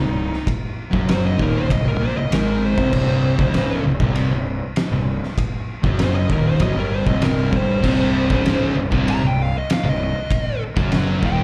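Brooding and ominous, this stoner and doom metal excerpt is caught live through a club PA, with a fuzz lead guitar carrying a dark, distorted solo melody, treated with slapback echo and analog delay, from the very start over two thick fuzz guitars grinding out the riff in the background. Up front, a growly, overdriven fingered bass sits beside an oversized low-tuned drum kit that enters at 0.3 seconds with a fat snare, boomy kick, crash and ride, its sound saturated and gritty. At 7.8 seconds a bright, double-tracked high-gain guitar joins the riff from the back with its own slapback echo, all under a light club reverb.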